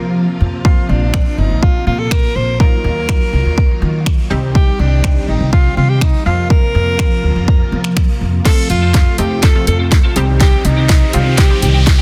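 Punchy, overdriven house drums sit up front from 0.6 seconds, with a cracking, softly clipped snare, bright hi-hats, finger snaps and crash cymbal driving this upbeat, carefree dance-pop passage at 123 BPM in a straight 4/4. Above them, a breathy, whispered alto saxophone carries the intimate, close-miked melody through a digital delay, while a woody pizzicato upright bass pumps against the kick. A lush vintage string machine holds sustained chords with ensemble chorus and sidechain pumping, and a round, detuned analog pluck adds quick, decaying accompaniment in the background. At 8.4 seconds a clean, picked twelve-string electric guitar riff slips in. Just after, at 8.5 seconds, the harmony moves from suspended and minor colours onto F as a drum fill begins a build-up, joined from 9.8 seconds by an electronic riser. The mix is dry, dense and heavily limited in a modern style, and the passage is cut from a longer piece.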